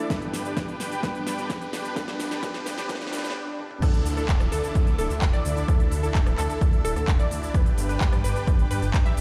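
Triumphant and anthemic, this festival progressive house excerpt builds on a dark, intimate grand piano and a dense, filter-swept supersaw riff over a thick detuned saw bass, a big-room drum kit with a huge snare and crisp hats, a punchy up-front electronic kick, a lush background pad and very quiet risers and swells, until the drop at 3.8 seconds replaces the piano with a wave-folded unison pluck arpeggio, with sidechain pumping on the piano, synths and bass and a stone-room reverb over the whole mix.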